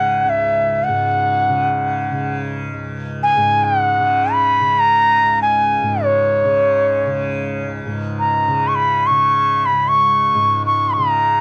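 A bansuri and a tanpura begin together at 0.0 seconds in this meditative, introspective passage of Hindustani classical music, set in raga Bhimpalasi on C# and tuned to A4 = 439 Hz. The bansuri carries the melody up front, its airy, reedy bamboo tone shaped by a soft attack and gentle vibrato as it moves between C#5 and C#6. Beneath it, the softly plucked tanpura holds a buzzing, shimmering drone from C#2 to C#3, sitting well back in the balance. The music unfolds in free time across two passages of the same material, the second starting at 7.9 seconds, and both instruments play through to the close at 11.4 seconds. Both parts carry the character of cassette tape, and the home recording has a moderate booth ambience that suits this brief, introspective fragment of a longer performance.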